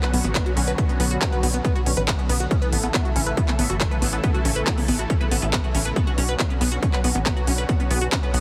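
Euphoric, emotional uplifting trance in B minor at 139 BPM, cut from a longer piece, where a silky, sidechain-pumped analog string pad with ensemble chorus holds sustained chords over a tight, detuned sequenced synth arpeggio dressed in chorus, phaser and digital delay, a nasal, punchy sequencer bass from 0.1 s, a tape-warm techno kit with smooth hats and handclaps, and a heavy layered electronic kick from 0.3 s, all moving through Bmadd9 and A in a dry, heavily compressed radio sound.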